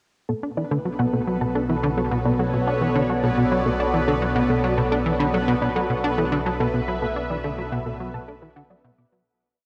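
A lush, thick pad of slowly shifting sustained chords opens this cosmic, expansive piece of sequencer-driven space music at 0.3 s, joined at once by a punchy, funky analog bass riff up front and a soft, round plucked arpeggio drifting against the bar in the background. A bubbling stepped-filter texture holding a high note enters at 0.6 s, and a vintage, evolving drone settles on the root from 1.2 s. Chorus, phaser and tape echo colour the parts under a huge wet reverb and a worn, warbly cassette sound, and the whole piece fades out from 6.3 s.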